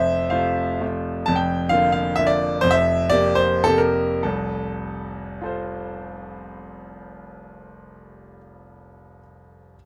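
Close, detailed microphones and a light reverb place a brilliant concert grand piano up front, its deep bass sounding natural beside the bright upper register. This short excerpt from a longer piece is a romantic classical dance in 3/4 and F major, with dotted rhythms giving it a rustic yet graceful character. The solo piano spans F1 to A5, and the tempo moves freely between 98 and 141 BPM with plenty of rubato, slowing noticeably from 0.6 to 4.2 seconds. The harmony rests on F, then moves to Bb over F and a C fifth over F before settling back on F at 4.2 seconds. The playing stays lilting and elegant, with the piano alone carrying both melody and accompaniment.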